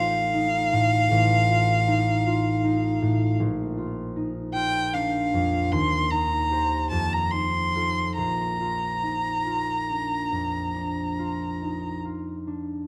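Tender and warm, this romantic classical duo for violin and harp drifts in a rubato 12/8 at about 46-53 BPM in Bb major, its harmony easing from F7/A to Bb, then through Cm/Eb and F7 before settling on Bb at 8.2 seconds. A single bowed violin carries the melody up front with a focused tone, vibrato and a smooth top, while the thumb-plucked concert harp rings beneath as accompaniment and sustains briefly after the violin stops at 12.0 seconds. Close, detailed microphones capture the pair in a moderate recital hall reverb, in this passage cut from a longer piece.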